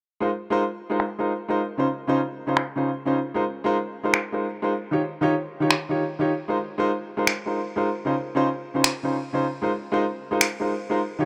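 Bright and euphoric, this short future bass cut from a longer piece moves with a half-time feel, built on a warm concert grand piano that plays accompaniment from 0.2 seconds, its deep bass and natural tone sitting up front under a tape echo. Electronic finger snaps enter at 1.0 seconds, produced and forward, with a low-pass filter on the snare, studio ambience and a filter sweep on the drums. The harmony circles through Ab6, Dbmaj7 and Eb7 inside a small room with light reverb.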